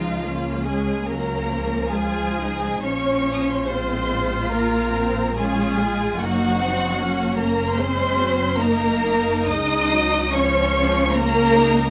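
A bowed violin section carries the melody high in its range, between F5 and Eb6, with a rich, focused tone and vibrato in this serene, lyrical slow movement for chamber string orchestra. A second violin line sits an octave lower beneath it, while the violas fill out the accompaniment in the middle register with a smooth top end. The cello section stands apart with a warm, expressive sound, soft attacks and gliding portamento. The double basses anchor the bottom between Gb1 and Db2. The music moves in Db major at roughly 63-76 BPM in 4/4 with a flexible rubato, passing through Bbm7 at 2.8 seconds and Gb6 at 6.2 seconds before settling back on Db at 9.5 seconds. Light reverb gives the ensemble a gentle sense of space across this 11.9-second passage, cut from a longer piece.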